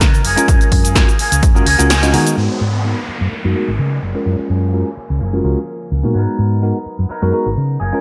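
Funky and groovy, this short filtered disco house cut from a longer piece rides a swung 16th-note feel, with a dry, punchy electronic kick up front and a tape-warm analog drum machine supplying hi-hat, shaker and snare until 2.4 seconds, the kick dropping out just before then after a band accent at 1.9 seconds. A dark, round hollow-body bass and a picked, compressed envelope-filtered guitar riff both pump under sidechain and a low-pass filter, while a bell-like tine electric piano, clean and bright through its built-in speakers with phaser, comps F#maj9 and G#m9 chords from 0.4 seconds. From 2.4 seconds a filter sweep runs to the end as an electronic downlifter sinks through the mix, all held in light digital ambience.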